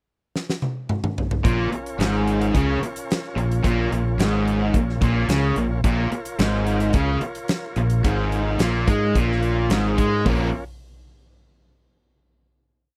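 A huge arena drum kit with a fat snare and punchy kick opens with a fill at 0.3 seconds, and at 1.4 seconds a brooding, driving classic rock riff in Bb minor at 109 BPM begins, played in single notes by a hollow-toned overdriven semi-hollow guitar and a bright, distorted guitar and doubled by a dark, round fingered electric bass in eighth notes, while a thick tonewheel organ through a slow rotary speaker holds chords in the background of a dry, close 1970s-style studio sound that ends on a final chord at 10.3 seconds.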